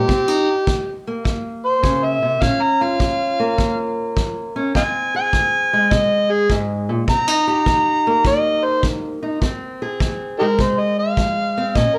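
Acoustic country blues with a mournful, smoky swing, where a gritty, overdriven harmonica leads up front with light vibrato, tongue slaps and scooped notes in a jazz-style solo through 9.4 seconds, over a dark, boxy fingerpicked parlour steel-string acoustic guitar and a punchy, roomy kick drum played with brushes, all set in a small room in this short cut from a longer piece.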